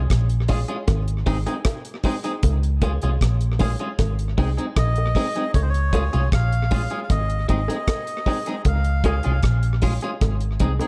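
Roots reggae at 77 BPM in Db major with an uplifting, warm mood, built on a dark, round, foam-muted fingered electric bass up front and a deep, dry drum kit of tight kick, hi-hat and rim click sent through analog delay, while a clean, twangy, compressed electric guitar with tape echo and tight, high-tuned bongos in the background fill out the Db–Ab sway until a reedy, breathy melodica, also touched with tape echo, takes the melody from 4.8 to 9.4 seconds in this echo-heavy but nearly reverb-free mix.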